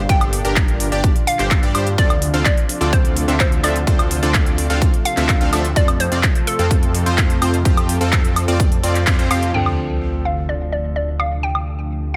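A euphoric, powerful festival progressive house excerpt in D minor at 127 BPM opens on the drop with a hollow square-wave pluck melody, a lush, warbling unison pad and a thick detuned saw bass pumping under the sidechain, joined by an airy supersaw stab riff, a punchy up-front electronic kick and a big-room drum kit with crisp hats, handclaps, woodblock and crash, before a band accent at 9.1 seconds leads at 9.5 seconds into the entry of a soft felt-muted upright piano with audible action noise and a sub drop impact alongside the continuing pluck, pad and bass in a dry mix.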